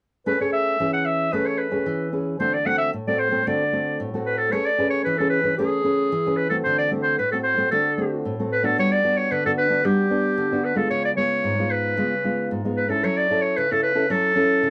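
At 0.3 s a clarinet and a nylon-string guitar begin together, opening a lively, joyful samba in a straight four. The clarinet carries the melody as the solo voice, its clear tone played in a classical style and sitting up front, though it also has a distant, roomy quality. Beneath it, the acoustic guitar supplies thumb-plucked classical accompaniment with a warm tone, also placed up front in the mix. The harmony alternates Amaj9 and D7, and a new passage at 4.5 s restates that pair before moving on through Gmaj7, C#7 and F#m7. The sound is that of a dry, close 1970s-style studio recording with light reverb, and the piece is cut from a longer work, with both parts stopping at 14.7 s.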